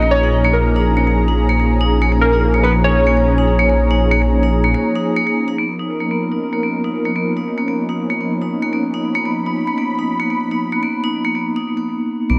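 A deep, rumbling detuned saw bass sits up front in this glitchy, intricate IDM fragment, dropping out at 4.7 seconds for a short break and returning briefly at 12.3 seconds. Warbling, nostalgic lo-fi synth keys with chorus and digital delay carry the melody until 5.1 seconds, while a metallic, ringing vibraphone plays arpeggios through a low-pass filter and dub echo. A smooth, chorused analog pad holds sustained chords that move from A#m7 to Bmaj9#11 at 5.6 seconds, all under light reverb.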